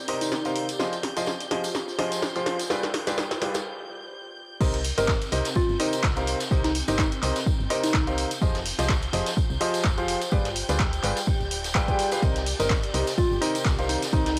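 Opening with a clear, up-front grand piano riff over round FM bass, an ethereal detuned pad and background strings, this soulful, energetic piano house excerpt in C minor at 126 BPM with a 16th-note swing builds through a drum fill on a punchy analog drum machine and a distant tambourine, breaks at 3.7 s, then drops at 4.6 s as a tape-warm electronic kick and a very quiet brushed kit join, while a gentle, keys-like FM synth lead with chorus and analog delay drifts in and out over Cm7, Fm9 and G7b9 chords, all steeped in spring reverb and the hazy character of a home cassette recording.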